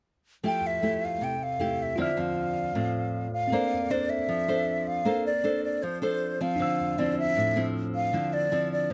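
A straight 4/4 bossa nova groove at 156 BPM sets a breezy, sophisticated mood in this short excerpt, where a fingerpicked, classical-style nylon-string guitar sits up front beside clean, bell-like tine electric piano chords moving from Fmaj9 and Dm7 to Bbmaj9 and Dm9 after 3.5 seconds, while a breathy concert flute carries the expressive, tongued melody with vibrato and lifted highs, all captured by close, detailed microphones in a dry room.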